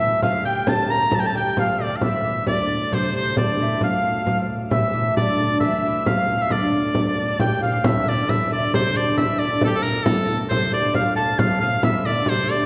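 This medieval dance excerpt in D minor moves at 134 BPM in a straight 3/4, with an ancient, mysterious mood, and its music shifts to a new section at 7.8 seconds. A bright, vibrato-laden shawm carries the folk-style melody up front, while a delicate, fingerpicked lute with double nylon strings and an airy, mellow tenor recorder with tongued chiff play second lines, the recorder sitting in the background. Beneath them a full, brilliant plenum pipe organ holds a low drone, and a small, close and dry frame drum, played with soft hands, joins up front at 0.2 seconds, all heard from further back in a wet recital hall.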